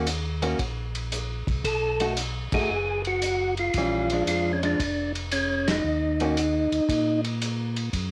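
A clean, compressed hollow-body jazz guitar accompanies a round, slow-rotary tonewheel organ bass as a fat-snared, dark-cymbaled soul drum kit joins almost at once in this smoky, late-night soul jazz organ trio excerpt in Eb minor at 114 BPM with a swung 4/4 feel, before an up-front, percussive organ melody with fast rotary and light overdrive enters at 1.6 seconds, the band hitting accents at 2.4 and 5.6 seconds, set in light studio reverb on a home cassette recording.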